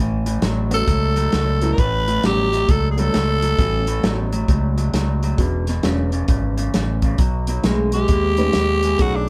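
Electric blues shuffle at 133 BPM, gritty and rollicking, cut from a longer piece and played live in one room with light reverb. A slightly broken-up, lo-fi guitar riff through a small old amp and a round, up-front fingered bass open together, and a soul drum kit with a tight kick, medium-tuned snare, hi-hat and a rolled-off top joins at 0.3 seconds. A reedy, worn electric piano with phaser sits in the background over A13, E13 and B13 chords, while a raspy, growling tenor saxophone plays a jazz-style lead up front from 0.7 seconds, drops out, and returns at 7.9 seconds.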